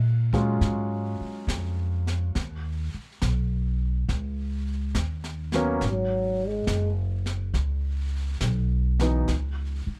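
A woody, thumpy pizzicato upright bass opens this melancholic, intimate swung jazz ballad fragment at 69 BPM, joined at 0.3 s by a polished grand piano with audible action noise and a small-room brush kit with a high-tuned snare and boomy kick, moving from Ebm11 through Eb5 to Abm7 before a breathy, whispered trombone with light vibrato and plate reverb briefly sings a short phrase at 5.9 s in a dark, dry mix.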